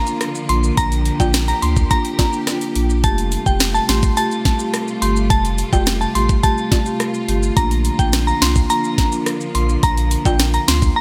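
Dancehall with a sunny, bouncy feel, this short excerpt from a longer piece moves in a straight four, gently lit by light reverb and a bright 1980s-style digital sheen. A glassy, crystalline FM synth bell carries the melody high above, its vintage tone warbling through chorus, tremolo and delay, while a studio string section holds lush, bowed chords underneath with smooth vibrato and a sidechain pump. Close-miked marimba played with medium mallets fills in a dry, full accompaniment, and a round sine sub bass arriving at 0.5 seconds anchors the low end with a deep, mellow hum. Up front, an electronic island pop drum kit brings a knocking kick, sharp snare, metallic hats and rim clicks, its overdriven sound re-recorded in a small room, as ringing maracas and timbales sit close and dry in the background. The harmony moves from Bb to Fadd9 at 3.0 seconds and back to Bb at 7.6 seconds.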